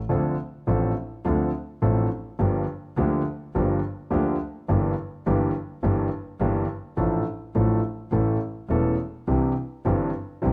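A rubato pulse stretches around 105 BPM in 4/4 in this passionate, dramatic tango in D minor, cut from a longer piece. A concert grand piano sits up front as accompaniment, intimate and vintage with deep bass and audible action noise, while a single bowed double bass plays beneath it with light vibrato, an intense tone and a smooth top; both sound from 0.1 to 10.5 seconds. The harmony moves from Dm7 through Gm7 and Em7b5/G to A before landing on Cadd9, set in a dark production with light reverb.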